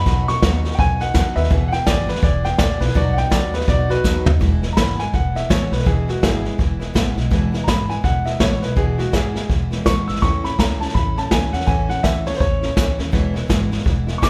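This upbeat, retro rockabilly snippet opens with a clear, long-sustaining upright piano taking a solo turn in the upper register. Picked acoustic guitar and pizzicato upright bass sound from the first moment, and a vintage kit played with brushes joins at 0.1 seconds. The drums sit up front with a dark, rolled-off top, a punchy kick and a medium-tuned snare, and they deliver a fill from 4.0 seconds. At 4.4 seconds the piano's solo gives way to a new section, where the piano keeps the melody over a swinging 4/4 feel. The full-bodied dreadnought guitar supplies accompaniment, while the thumpy, gut-strung bass stays in the background. Light reverb gives the impression of a band playing live together in one room.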